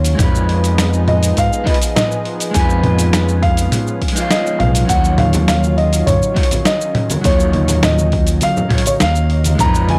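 A dry, gritty hardware recording with light digital ambience frames this relaxed, wistful sunset chillout passage, cut from a longer piece, in Eb minor at 102 BPM in a straight 4/4, tuned to A4 = 438 Hz. A dark, mellow baby grand piano with a boxy, short-sustained tone carries the melody through tape echo, while a slightly broken-up, picked electric guitar adds accompaniment, also through tape echo. Underneath, a growly, punchy fretless electric bass with analog chorus sits prominently, and a lush, thick pad of detuned sawtooth and square waves holds slow-attack chords in the background with chorus and phaser. The dusty soul sampler-style kit, compressed and up front with a medium-tuned snare, hi-hat, toms and cabasa, is layered with an overdriven, punchy electronic kick. Ringing acoustic congas played with hard hands join quietly in the background at 5.2 seconds, just after the harmony moves from Fm7b5 to Ebm9 at 4.9 seconds.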